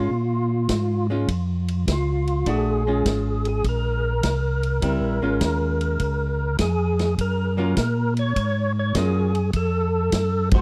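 A swung 4/4 groove at 102 BPM gives this late-night, soulful soul jazz organ trio its lope in Bb minor, with the vintage drum kit entering at 0.7 seconds on hi-hat, tight kick, snare and dark ride cymbal. A fat, lightly overdriven tonewheel organ carries the melody with key click, percussive third-harmonic attack, chorus vibrato, slow rotary speaker and tape echo, while a clean, hollow-body archtop guitar accompanies, and a mellow, round second organ plays the bass over Bbm7, Gbmaj7 and F(b9). The dry, close 1970s-style studio sound keeps the drums and both organs up front, and a band accent lands at 10.4 seconds in this cut from a longer piece.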